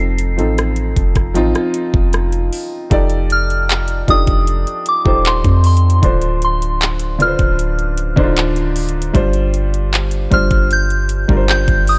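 A soft, pure FM synth bell carries the melody high above a clear concert grand piano and a round 808-style bass from the very start, with chorus, phaser and tape echo on the bell and transformer saturation on the deep, dark bass. A smooth electronic R&B kit joins at 0.2 s with a knocking kick, metallic hi-hats, rim clicks and handclaps, settling into a sensual, moody contemporary R&B groove at 77 BPM in 4/4 as the harmony moves from F7 to F13 at 2.9 s, then on to Dm7 and G7sus4. The dry, gritty mix keeps the drums, bass and piano up front in this fragment of a longer piece.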